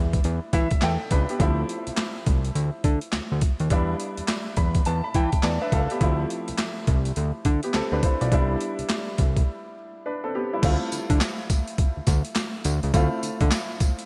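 Gritty, overdriven sampler-style drums with a thumpy kick, high-tuned snare, handclaps and tambourine, steeped in gated reverb, drive this bouncy, slick new jack swing R&B excerpt alongside a fat, detuned analog bass with a plucky filter and a clear, natural baby grand piano that adds short fills over Em7, Dm7 and Cmaj7 chords, before a break at 9.5 seconds gives way to a Dm9 section at 10.6 seconds in a lush hall with a bright 1980s-style digital sheen.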